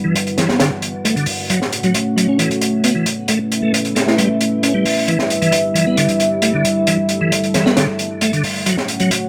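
A straight 4/4 breakbeat at 134 BPM kicks in at 0.2 s on a crunchy, saturated kit of hi-hat and high-tuned snare, high-pass filtered with a rolled-off top, sitting up front in a small acoustic room for a funky, gritty feel in E dorian. A piping tonewheel organ riff with key click, chorus vibrato, fast rotary speaker, delay and a filter sweep rides over a moody analog pad of detuned sawtooth and sub-octave tones. The pad, roughened by 12-bit sampler grit, holds slow-attack chords moving from Em7 through F#m and Aadd9, all bathed in a wet studio reverb in this short cut from a longer piece.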